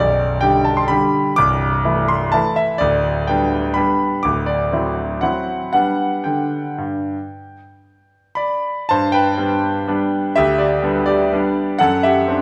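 Heard through a wet recital-hall reverb, a bright concert grand with a brilliant yet worn tone, deep bass and an up-front presence plays this elegant, graceful classical waltz alone in 3/4 and G major, moving with rubato at a tempo drifting between 111 and 137 BPM, its phrase turning through G/B, Am/C and G/D to D9 and G before a new section at 8.9 seconds that reaches D7/F# at 11.8 seconds, the passage cut from a longer piece.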